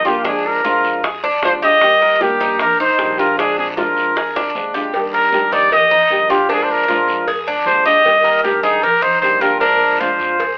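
Warm and sunny, this brief cut from a longer Cuban son and guajira piece moves at a straight 154 BPM in Eb major, alternating between Bb7 and Ebmaj7 under a punchy, vibrato-laden trumpet melody that sits up front yet sounds distant and roomy. Around it, a bright, metallic tres with double strings picks arpeggios, a fingerpicked nylon-string guitar plays classical-flavoured accompaniment until 10.4 seconds, and a soft, felt-muted upright piano with audible action noise adds a second line only until 4.5 seconds, while a woody, thumpy gut-string upright bass lies low in the background. Tight bongos and cowbell, high-tuned congas struck with hard hands, and a raspy, dry guiro fill out the percussion, a drum fill at 4.4 seconds leads into the repeated section, and the whole mix carries a telephone-like filtering in a moderate studio reverb.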